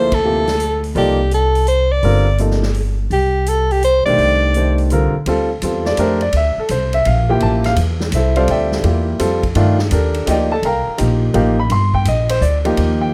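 A light reverb frames this short, clear-sounding cut from a longer modal jazz piece in D phrygian, moving at a brisk 168 BPM in a swung 3/4 with an intense, hypnotic pull. Up front, a soprano saxophone carries the melody in a jazz style, its clear solo voice shaded with vibrato and subtone, before falling silent at 4.9 seconds. A baby grand piano, clear and natural, supplies the accompaniment across the full span, while a pizzicato upright bass with steel strings gives a woody, dark low end. Set further back, a big-room drum kit with a punchy kick, medium-tuned snare, hi-hat and ride cymbal keeps the swing going, joining a band accent at 0.1 seconds. The harmony shifts between Dm11 and Cm11, and after the saxophone drops out, the second section from 5.3 seconds leaves piano, bass and drums to sustain the trance-like groove.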